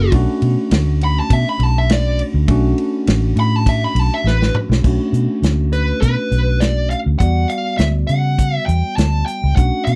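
Brooding and mournful, this short cut from a longer straight-eighth soul blues in B minor at 102 BPM opens with a dark, smooth overdriven lead guitar soloing over tine electric piano bathed in lush chorus, a round, punchy foam-muted fingered bass sitting up front, and a tight, roomy soul drum kit with a rolled-off top whose fill at 4.3 seconds leads into a new section, as the harmony moves from Bm9 to Em9 at 7.2 seconds in a dry sound.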